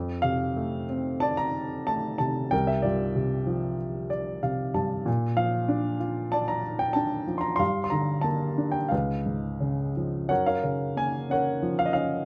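The rhythm moves in a loose, rubato 4/4, drifting between 85 and 97 BPM in this short cut from a longer classical piece for lyrical solo piano. A single upright piano plays from start to finish, spanning C2 to C6 in F major and tuned to A4 = 441 Hz. Its woody, intimate tone sits up front, letting the instrument's action noise come through. The harmony passes from F6 through C9sus4, Bb and Gm7 to Db7, and the passage shifts at 10.3 seconds onto Gbmaj7. A brief piano fill between 3.8 and 5.1 seconds stands out in the opening stretch, while light reverb adds a touch of air and the mood stays relaxed and hopeful.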